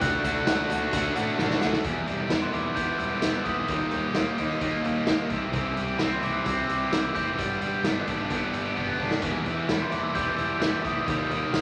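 A straight 4/4 pulse at 130 BPM drives this upbeat, wistful indie rock excerpt, where a raw garage drum kit with a punchy kick and rolled-off top, plus drum fills at 1.4 and 8.8 seconds, backs two up-front overdriven guitar riffs, one crunchy and bright, the other warmer, over a round, foam-muted picked bass, while a mellow, bell-like glockenspiel played with rubber mallets carries the melody, a buzzy vintage combo organ and a grainy egg shaker are heard only until about 1.8 seconds, and chords move from D through Em, Eb, C and G inside a large studio reverb.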